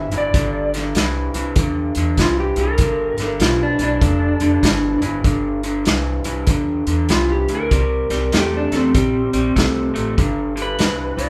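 A slide guitar carrying the melody opens this swaggering, soulful electric blues shuffle at 98 BPM, joined at once by a riffing electric guitar through a small old amp and a plucked upright bass, with a vintage drum kit coming in at 0.1 seconds. The slide guitar is fingered and compressed, slightly broken-up, with a slapback echo on its lines. Beneath it, the lo-fi riff guitar sits up front with a warm, slightly broken-up, picked edge, while the woody, dark bass on steel strings anchors the low end. The drums are close and punchy, with hi-hat, a medium-tuned snare and a kick, their top end rolled off in a small-room sound. The harmony moves from G5 to C7 at 7.7 seconds and back to G at 10.2 seconds, and the whole band sounds as though it is playing live together in one room with light reverb, in a short cut from a longer performance.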